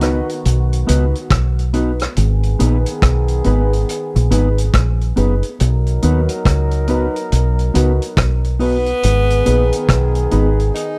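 Serious and hypnotic, this roots reggae excerpt from a longer piece rides a swung 4/4 groove over B and G#m chords. Up front, a deep, round, punchy fingered dub bass sits with a gritty, saturated vintage drum kit playing a tight kick, hi-hat and rim click. A dark, clean electric guitar with spring reverb and tape echo, woody upright piano stabs with audible action noise, and a distant, roomy trombone section carrying a second line through tape echo fill out the dry, close 1970s-style studio sound, and a clear, close-miked tenor saxophone with vibrato enters at 8.6 seconds to take the melody, also touched by tape echo.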